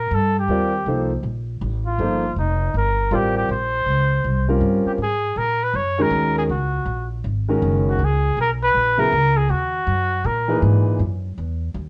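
Spiritual and cool, this brief modal jazz excerpt swings at 160 BPM in C dorian before shifting to G# minor at 5.0 s, with an up-front trumpet carrying the melody with light vibrato and scooped notes, a woody pizzicato upright bass underneath, and an intimate, warm concert grand piano accompanying with deep bass and audible action noise, all coloured by light reverb and the warbling pitch drift of worn old cassette tape.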